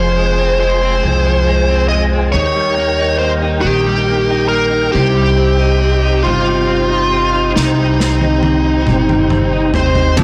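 The recording sounds blown-out and overdriven, set in a moderate concert hall reverb that lingers around each note. This short, aching, melancholic pop ballad excerpt moves slowly at 46 BPM in a straight 6/8, drifting through Fm, Eb and Cm. A dark, distorted, bluesy lead guitar carries the melody up front, its picked line colored by digital delay. Beneath it, a clean, compressed electric guitar recorded direct and double-tracked plays the accompaniment. A soft, flute-like tonewheel organ holds sustained chords through chorus vibrato and a fast rotary speaker, while a woody, thumpy upright bass with gut strings sits close and plucked. At 7.6 s an acoustic drum kit with an airy small-room sound and bundle sticks plays a fill across crash, punchy kick, medium-tuned snare and toms. A full-bodied jumbo steel-string acoustic guitar with fresh strings and audible finger squeak arrives with picked arpeggios at 10.2 s.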